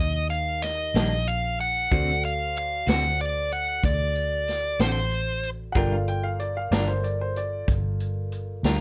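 A dry recording carries this mournful, soulful slow blues in G minor, moving at 62 BPM in a straight 12/8 over Ebmaj7, D7 and Gm7, cut from a longer piece. An up-front, smooth overdriven lead guitar sings the melody until 5.5 seconds over a mellow, boxy grand piano, a round, foam-muted fingered electric bass, a vintage drum kit with a tight kick and rolled-off top, and a clean semi-hollow electric guitar colored with tremolo. At 5.7 seconds a clear, woody upright piano with audible action noise takes a brief second line.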